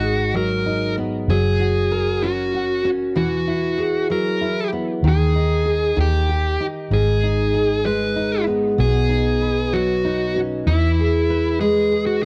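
A dark, intimate home cassette recording with a damp booth ambience carries this melancholic, dramatic pop fragment in 6/8 at 64 BPM in G# minor, moving through G#m7, F#, Eadd9 and on to Badd9 and E. An overdriven, smooth lead guitar sings the melody up front with plate reverb, while a full-bodied jumbo steel-string acoustic is fingerpicked beside it, finger squeaks audible. Underneath, a vintage foam-muted electric bass adds a round, punchy low end across the full 12.2 seconds.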